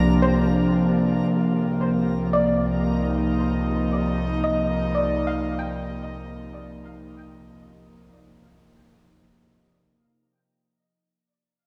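In a straight 4/4, this melancholic yet serene ambient excerpt sets an airy, breathy pad of sustained, chorused chords up front over a deep sine sub bass, while a soft, round pluck spins dark, detuned arpeggios through lush chorus and dub echo from 0.2 to 7.4 seconds, and a reversed, granular swelling texture glows in the background; the echo-heavy mix sits in a wet plate reverb as the sub bass and texture fade out.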